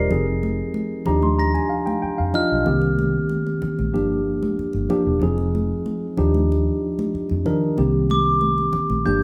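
A straight, unhurried 4/4 pulse at 94 BPM carries this short, lush fragment of 1970s-style soul, romantic in mood and tuned slightly sharp to A4 = 443 Hz. A mellow, clean tine electric piano sits up front with the accompaniment, cycling through Fm7, Ebmaj9, Cm7 and Gm7 and adding a fill from 0.8 s. Beneath it, a vintage foam-muted fingered electric bass gives a dark, round, punchy low end. Congas with a thick, damped skin play along in the background, while a sparkling glockenspiel struck with hard plastic mallets adds close, bell-like glints before dropping out at 2.9 s and returning at 8.1 s. The band sounds as if it is playing live in one large studio room, with a moderate reverb around the whole.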